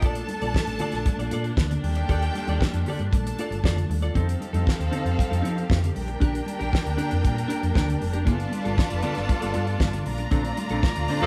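A damped 70s drum kit drives this disco passage at 117 BPM in a straight 4/4, sitting up front with a fat snare, a tight kick and hi-hat in a dry, mid-forward sound. Beneath it, a hollow-body short-scale electric bass, played with the fingers, gives a dark, round, amped low end, while a clean electric guitar adds bright, twangy, compressed picked accompaniment. A rich violin section carries a lush, expressive second line close to the listener, full of vibrato and portamento, and a more distant, focused string section holds sustained chords behind it. Congas with a thick, medium-tuned skin come in at 0.3 seconds and stay in the background with a band-limited vintage tone. Over chords moving from Bbmaj7 through F7 and G9 to Bbmaj9, the band hits an accent at 10.3 seconds, and a tight horn section punches in with an octave-doubled stab at 11.2 seconds just as this driving, sultry cut from a longer piece ends, with the band playing live in one room under a moderate large studio reverb.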